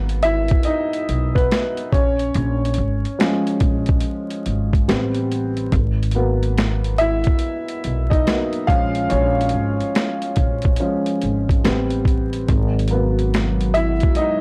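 A slightly detuned, vintage upright piano carries this melancholic, reflective lo-fi hip hop excerpt at 71 BPM with a swung 4/4 feel, moving through G#m7, A#m7 and Am7 over woody pizzicato upright bass and a compressed, pitched-down boom bap kit with a thumpy kick and high-tuned snare, while a dark, chorused analog pad joins in the background at 12.5 seconds, all set in a small room with gritty vinyl crackle.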